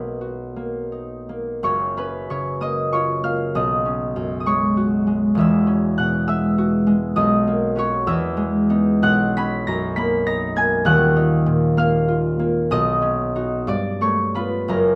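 Close, detailed microphones and a light reverb put a solo concert harp up front, its mellow, ringing, fingerpicked tone spanning from D#1 to B6. This graceful, serene classical fragment, cut from a longer piece, moves in a rubato 6/8, with a brief opening passage giving way at 1.7 seconds to a longer section. Lush major-seventh and added-note harmonies such as Bmaj7, E69 and D#madd9 drift by before the passage settles toward G9.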